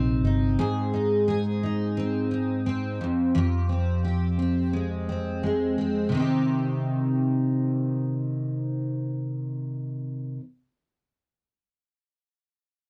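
A dry, close recording with a 1970s studio character and a light touch of reverb frames this short acoustic pop excerpt, which is cut from a longer piece. At 87 BPM in a straight 4/4 and set in C minor, the mood is wistful and tender. A double-tracked, picked steel-string acoustic guitar sits up front with a full-bodied jumbo tone and the warm sound of fresh strings, carrying the accompaniment across the whole 10.4 seconds. A vintage muted electric bass, fingered and foam-muted for a dark, round, amped sound, appears only in the opening 0.6 seconds. The harmony moves from Cm through Ab to Fmadd9, then returns to Cm as a second section begins at 6.1 seconds.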